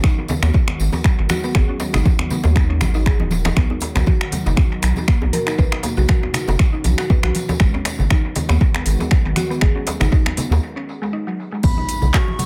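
An up-front, overdriven electronic kick drives this hypnotic afro house excerpt at 119 BPM in G# minor, joined by a round, dark analog bass that pumps to the sidechain and a deep house kit with metallic hats, snaps, handclaps and crash run through dub echo. Woody, mallet-like FM pluck arpeggios with tape echo float over an ethereal, detuned pad in the background, while congas, a close, dry djembe and a jingly tambourine fill out the percussion over a G#m7 to B progression. After a break at 10.6 seconds, a breathy, straight-toned silver flute enters at 11.6 seconds alongside a very quiet impact, all set in a light, echo-heavy mix.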